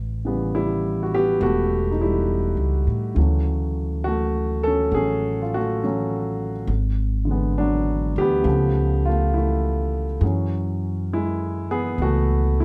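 The recording sits in a light reverb, with both instruments placed up front and close, giving it an intimate, late-night feel. This is a slow, romantic jazz ballad in A major at 68 BPM in 4/4, with a swung eighth-note feel. An acoustic upright bass opens at 0.0 seconds, plucked pizzicato on gut strings, and its tone is woody and thumpy in the low register. A grand piano joins at 0.2 seconds as accompaniment, its sound warm and natural, with the noise of its action audible under the chords. The harmony moves from A7 through Dmaj7, G#m7b5 and C#aug7 before settling on F#m9 at 10.2 seconds, as this brief cut from a longer piece comes to a close.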